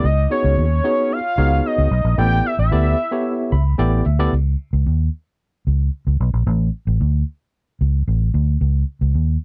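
A fat analog lead, a tine electric piano and a muted fingered electric bass start together at the top of this feel-good, smooth slice of early-eighties boogie funk in a straight four. The lead carries the melody with a detuned sawtooth tone, a sub octave, a touch of ring modulation, and chorus with vibrato; its fast attack gives way to sustained notes until it stops at 3.6 seconds. The electric piano sounds worn and slightly out of tune, lightly overdriven as if through its built-in speakers, and plays a fill before it drops out at 4.3 seconds. From there the round, foam-muted bass, dark and amped, holds the bottom alone through the second section to 9.4 seconds as suspended chords pass. The recording is dry and close, in the manner of a 1970s studio, with every part up front.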